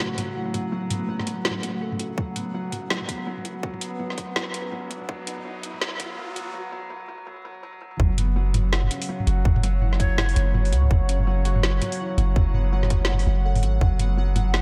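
A swung, half-time drum and bass groove drives this cinematic, spacious fragment of a longer piece. An up-front electronic kit with a woody snare, metallic hats and toms, re-recorded in a small room, enters at 0.2 seconds and is joined by a tight, layered electronic kick at 2.2 seconds. Beneath them, a long, sine-toned 808-style bass sits deep and mellow, and a moody detuned sawtooth pad with a sub octave holds sustained minor chords, roughened by 12-bit sampler grit and pumping against the beat. A soft felt-muted upright piano plays intimate arpeggios through a delay, its hammer action audible. Filter sweeps on the pad and piano, plus a faint electronic riser and a bright pulsing gated texture in the background, build toward a short break and a drop at 8.0 seconds. At 10.0 seconds, a breathy, reedy jazz flute with vibrato and tape echo flickers briefly in the distance.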